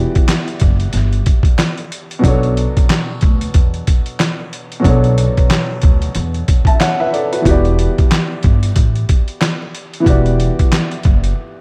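Boom-bap hip-hop with a reflective, dark mood, this swung short cut moves between Em7 and Bm7. A warm, smooth vintage upright piano with short sustain carries the accompaniment through cassette-tape coloring and filtering. A woody, pizzicato upright bass with a thumpy low end sits beneath a gritty, compressed, pitched-down sampler-style kit of thumpy kick, medium-tuned snare, hi-hat and handclaps that stays up front until a break at 11.4 seconds, all set in small-room ambience with light reverb and vinyl crackle.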